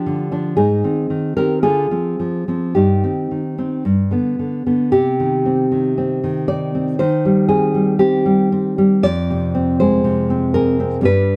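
A lightly reverberant recording places a solo nylon-string guitar up front, its fresh strings sounding warm and thumb-plucked, with an audible finger squeak. This wistful, intimate romantic classical piece sits in C minor at a slow, rubato 53-61 BPM in 2/4, tuned to A4 = 438 Hz, spanning F2 to D5. An opening phrase moves from G7 through Ab and Dm7b5 to a cadence on G, and at 4.9 seconds a new passage settles on C minor before turning to Fm at 9.1 seconds, where this excerpt ends.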